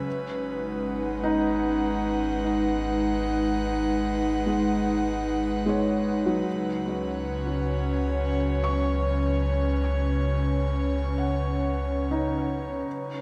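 Ambient and serene, this reflective fragment of a longer piece sets an airy, breathy pad holding sustained chords up front over a felt-muted upright piano's intimate arpeggios with tape echo and audible action noise, a deep, round sub bass beneath, and a very quiet glassy texture of drifting overtones surfacing only at 13.0 seconds, all bathed in a wet echo-chamber reverb as G#m7 gives way to C#7sus4.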